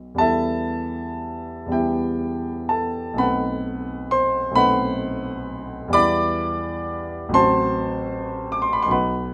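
Mournful and yearning, this brief excerpt of a romantic classical nocturne in E minor unfolds in a slow, rubato 12/8 at 37-44 BPM on a solo grand piano, warm, natural and up front in a light reverb, ranging from A1 to D6 as it moves from Em through B7b9 and back to Em before settling on F#dim/A at 7.4 seconds, with the instrument tuned to A4 = 443 Hz.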